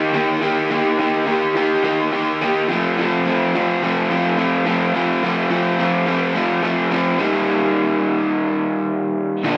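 A straight 4/4 pulse at 106 BPM drives this restless, bittersweet rock fragment, tuned to A4 = 441 Hz and played by a band live in one room. A crunchy, overdriven electric guitar carries the solo up front from the opening through 9.6 seconds, its picked, double-tracked tone ranging from Bb2 to G4 over chords moving from Eb to F and back to Eb at 7.2 seconds, where a new section begins. A moderate, large studio reverb gives the guitar a roomy sheen.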